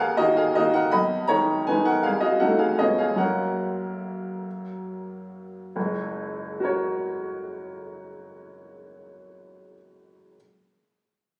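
A classical piano waltz in 3/4, this short excerpt cut from a longer piece has a playful, elegant mood and a freely breathing rubato feel. A bright upright piano plays alone throughout the 10.4 seconds, ranging from F#1 up to B5, its woody, brilliant tone sitting up front with a short sustain and an open character. The harmony moves from D#m through G#m/B and Cdim7 to C#9 before settling on F# at 3.2 seconds, while the tempo slows between 2.6 and 5.8 seconds as the opening section closes and a new one begins. A moderate recital hall reverb surrounds the instrument. The recording was captured on a phone in the room, so a murmur of club ambience hangs around the performance, giving it a casual, overheard quality.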